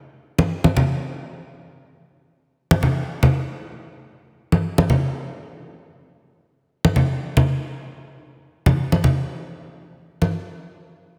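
A lush hall reverb with a long 2.4-second tail surrounds this short cut from a longer house piece, and the dense, heavily limited modern master gives it a packed, pressed-forward weight. Set at 116 BPM in 4/4 with a 55% swing on the sixteenths, the groove has a loose, late-night sway and a moody atmosphere. Congas are the only part, entering at 0.4 seconds and carrying the percussion through to 10.3 seconds. Their tone is bright and acoustic, yet compressed and saturated, which lends the hand drums a gritty density. Placed up front in the mix, the congas sit close to the listener while the hall's reflections bloom behind them.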